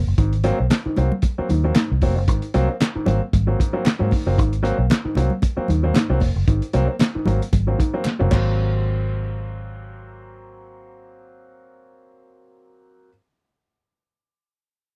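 A dark, round, foam-muted fingered electric bass anchors this gritty, energetic funk excerpt at 114 BPM in Ab mixolydian, with a lightly swung sixteenth-note feel, opening on an Ab9 chord before woody upright piano stabs join. A muffled, saturated, cloth-damped drum kit with a fat snare and dark cymbals drives the groove, while bright, high-tuned congas and a crisp group handclap sit in the background. The kit plays a fill at 8.1 seconds and stops at 8.5, after which the bass and piano carry on in a dry, close, 1970s-style studio sound.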